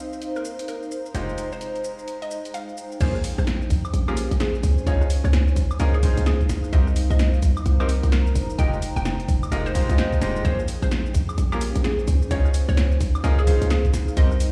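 A short, punchy 808-style bass sits up front in this moody, bouncy two-step UK garage excerpt at 129 BPM in Bb dorian, swung at 62% on the 16ths, while bright grand piano stabs with dub echo carry a filter sweep through the opening 3.0 seconds. At 3.0 seconds the drop arrives with a knocking, layered electronic kick joining the tape-warm analog drum machine's punchy snare, hi-hat, rim click, shaker, woodblock and crash. Above it, a hollow, detuned square pluck with chorus and dub echo plays the melody over an ethereal, airy pad that pumps with sidechain and shimmers with ensemble chorus, all cycling through Cm7, Fm9, Bbm9 and Dbmaj9 in a bare room on a big sound system with large studio reverb.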